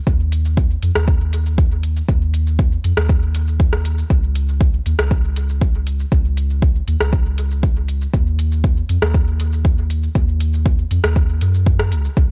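An up-front electronic kick drum anchors this deep, meditative dub techno excerpt, its deep, layered thump roughened by overdrive and set in studio reverb. It runs from 0.1 to 12.3 seconds at a steady 119 BPM in a straight 4/4, tuned to A4 = 438 Hz. Beneath it, a soft, round sub bass built from triangle and square waves sits between C#2 and F#2, with a fast attack, sustained notes and sidechain pumping that gives it a breathing pulse. A deep house kit of cabasa, metallic hi-hats and rim click stays further back, overdriven and trailed by studio reverb and dub echo. The whole piece sits in a digital, echo-heavy ambience that suits this fragment cut from a longer track.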